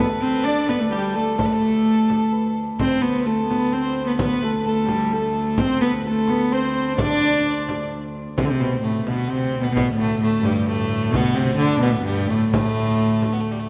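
A warm, up-front viola da gamba carries the melody of this driving, mysterious medieval dance in 3/4, beginning at 129 BPM and speeding up throughout. Its fretted, bowed tone is airy and floating with light vibrato. A clear, intense fiddle and a mellow, shimmering hammered dulcimer play second lines, with the dulcimer stopping at 9.5 s, while a bright second viola da gamba holds a D drone in the background and a deep frame drum adds percussion, all in a reverberant recital hall, in this brief excerpt from a longer piece.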